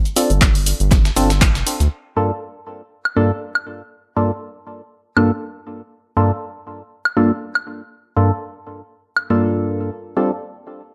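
Lightly reverberant with a digital sheen, this moody deep house excerpt in G minor at 120 BPM with a gentle swing opens on a gritty, tape-warm soul sampler kit of hi-hat and snare tucked behind a punchy analog drum machine of claps, hi-hat, shaker and woodblock. A hollow, mellow organ stab with chorus, phaser and delay soon pumps up front over Dm7 moving to Gm9, followed by a round, dark, wave-folded analog bass and then a dry, overdriven electronic kick. The kick drops out at 1.5 seconds, the bass and sampler kit stop at 1.9 seconds, and after the drum machine ends at 9.3 seconds the organ stab carries on alone into a closing Dm7/G.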